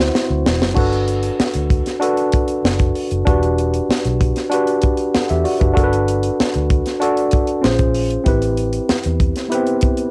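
A straight 4/4 groove opens with a drum fill in the first 0.8 seconds before settling into smooth, lush 1970s-style soul, where a tight funk drum kit with bright cymbals, a high-tuned snare and a tight kick sits up front beside a worn, slightly out-of-tune tine electric piano carrying the chords with cassette-tape grit, while a dark, round, foam-muted fingered electric bass with transformer saturation anchors the low end until 9.3 seconds, all in a homespun cassette recording with light reverb that feels cut from a longer piece.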